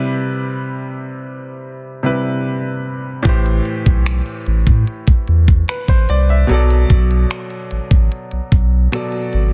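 The recording has a dense, heavily limited modern sound set in a digital ambience. This short cut from a longer contemporary R&B piece moves at 74 BPM in a straight 4/4 in A dorian, with a moody, longing mood. A bright grand piano opens alone, its brilliant, polished tone sitting lower in the mix than the other parts, with short sustain across chords of Cmaj7, Am7 and Bm7. At 3.3 seconds a deep, round sine sub bass enters up front with a fast attack and sustained notes. An electronic trap drum kit arrives at the same moment, bringing a knocking kick, crisp hi-hats and finger snaps, with soft clipping on the snare. The produced drums and the sub bass sit forward together alongside the piano until the cut ends at 9.5 seconds.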